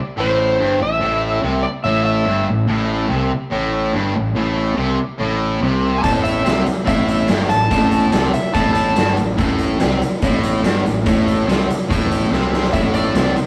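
Smoky and brooding, this rough rehearsal-room blues rock and southern rock excerpt at 143 BPM in A minor sets a double-tracked, picked fuzz guitar riff and a growly, overdriven fingered bass under warm slide guitar phrases with slapback echo, while an oversized, low-tuned drum kit with a punchy kick and gritty, saturated tone enters at 6.0 seconds and adds a fill at 12.3 seconds, all washed in a wet stone room reverb.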